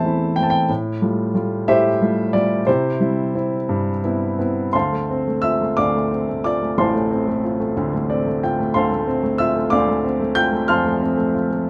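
A grand piano opens alone on an A minor chord, setting a dark, melancholic mood in a lyrical classical style. The solo moves in a slow, flexible 6/8 at roughly 57-63 BPM, its rubato phrasing letting the pulse breathe as the harmony passes through Fadd9/A and Cmaj7. Around 4.7 seconds a new section begins on Dm7, and a brief piano fill stands out from 7.8 to 8.8 seconds. The instrument sounds natural and intimate, sitting up front with audible action noise that brings the listener close to the keys. Light reverb gives the short passage, cut from a longer piece, a gentle sense of space.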